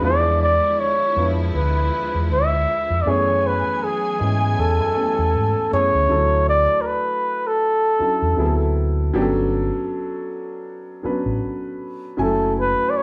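A mellow, close-miked flugelhorn carries the melody up front with soft attacks, vibrato and a jazz phrasing, over a dark, boxy grand piano and a round, amped fingered electric bass in this sultry, soulful neo-soul R&B excerpt with a swung 16th-note lilt. A bowed string section plays sustained chords, sul tasto and smooth on top, until 6.1 seconds, as the harmony moves from E7b9 and F#m11 into a Dmaj7 and Gmaj9#11 passage before settling on F#m9. The band sounds as if playing live in one room, wrapped in a moderate large studio reverb.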